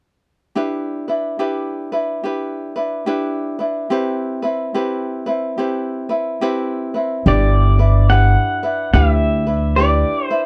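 Languid and dreamy, this slow Hawaiian fragment at 72 BPM in G major opens with a light, fingerpicked acoustic ukulele swinging through G6 and Cmaj7 chords, until at 7.3 seconds a bright, clean, compressed electric pedal steel guitar enters with fingerpicks, slide and volume swells on the melody, joined by a woody, thumpy pizzicato upright bass on gut strings, all three placed up front in a dry, close 1970s-style studio sound with light reverb.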